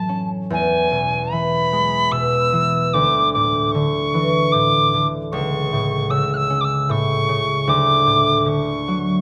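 A wooden whistle and a concert harp begin together on an A6 chord, opening a pastoral, nostalgic Celtic slow air in E mixolydian, tuned to A4 = 439 Hz. The feel is rubato in 3/4, around 75 BPM. The whistle carries the melody high between G#5 and F#6, its pure wooden tone shaded with vibrato, tongued notes and a breathy chiff, and it sits up front with an expressive yet slightly distant quality. Below it, the fingerpicked harp lays down a bright, ringing accompaniment from C#2 to C#4, moving through E, Dsus2, A/C# and D. A moderate recital hall reverb with a 1.5 s decay lends space to this brief passage, which is cut from a longer piece and ends at 9.2 seconds.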